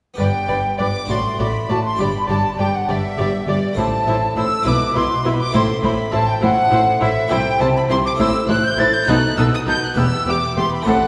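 Brilliant and festive, this baroque-style concerto movement in a straight 6/8 at 68 BPM opens in G major and turns to E minor at 7.3 s, as a mellow, hollow silver flute with vibrato and a crisp attack carries the melody alongside a violin section with gut-string tone, over a darker second violin line in the background, nasal violas, background cellos, a dark double bass section and an airy, brilliant harpsichord, all set back in a reverberant concert hall.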